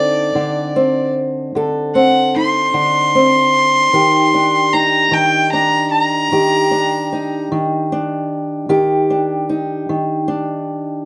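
Moving in a slow, straight 12/8 at 50 BPM, this short cut from a longer acoustic country blues piece feels soulful and brooding, shifting from D5 to Ebmaj7 at 3.9 seconds. A bowed fiddle with a reedy, gut-string tone carries the melody up front until 7.5 seconds, while a fingerpicked old ladder-braced acoustic guitar, dark, woody and boxy on aged strings, supplies the accompaniment through 11.1 seconds. A wet studio reverb places the pair further back in the room, lending the fiddle a distant quality.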